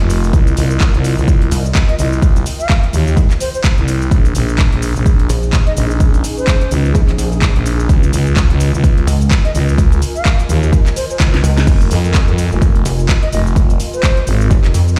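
A swung 4/4 groove at 127 BPM drives this bouncy, gritty bass house excerpt in F minor, with a punchy, overdriven electronic kick sitting up front from 0.3 seconds. Around it, the overdriven house drum kit adds a cracking snare, brilliant hi-hats, handclaps, cabasa and crash cymbal, with a drum fill at 11.2 seconds. Two basses share the low register. A thick, growling FM bass with overdrive and sidechain pumping is joined at 1.5 seconds by a heavy, saturated pluck wobble bass with chorus that also pumps. Deep in the background, an ethereal, airy pad with a slow attack, ensemble chorus and long release rises and falls with the sidechain, while a hollow, close-miked silver concert flute with vibrato carries the melody. The harmony moves through Cm7, Bbm, Dbsus2 and Fm, and the mix sounds as if it were played on a big sound system in a bare stone room.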